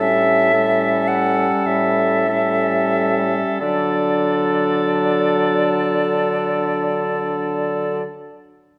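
A bright silver concert flute with vibrato and a crisp attack carries the melody in this tender, lyrical excerpt from a slow romantic classical movement for wind quintet in a rubato 12/8, over a distant, roomy oboe second line, clear clarinet and mellow French horn accompaniment, and a warm, smooth-topped bassoon bass up front, slowing through the opening 3.6 seconds as an A7 chord resolves to D within a moderate stage reverb.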